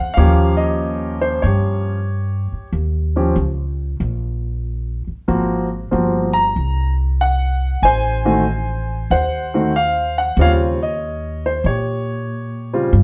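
A live room sound with a moderate large-studio reverb frames this warm, sophisticated jazz fragment, cut from a longer piece and swinging at 94 BPM in 4/4 over Eb mixolydian. Up front, a natural concert grand piano with deep bass carries the melody from Db3 to Bb5, while a woody, thumpy pizzicato upright bass on dark gut strings holds the low end from G1 to Bb2. Both play throughout the 13 seconds over the chords Eb9, Ab13, Adim7 and a closing Eb13 at 10.4 seconds.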